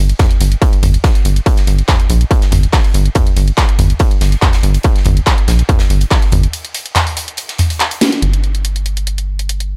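A straight 4/4 pulse drives this relentless, industrial peak-time techno cut, built on a distorted, overdriven electronic kick and a tight, punchy sequencer bass whose sawtooth-and-square filter plucks pump in the sidechain. Up front, an overdriven techno kit adds handclaps, hi-hat, toms and a cracking snare, while an acoustic arena kit sits in the background with high-passed hats and a medium-tuned snare in a pumping hall sound, all set in a small room ambience. The kick drops out at 6.2 seconds ahead of a break, and a drum fill with a band accent at 8.0 seconds launches a new section as the bass and techno kit carry on.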